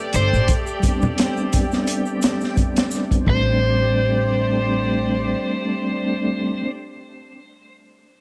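A crunchy breakbeat kit with a punchy kick and high-tuned snare, joined by a saturated tube shaker and congas, drives a lightly swung 86 BPM trip hop groove in A minor until both fall away by 3.4 seconds, while a woody, growly pizzicato upright bass, an up-front overdriven slide guitar roughened by 12-bit sampler grit and tape echo, a mellow flute-like tonewheel organ with slow rotary shimmer and a filter sweep, a clear bowed string section under its own filter sweep, and a dreamy reversed texture in the background carry this smoky, melancholic passage from Am11 to Am7 at 3.3 seconds.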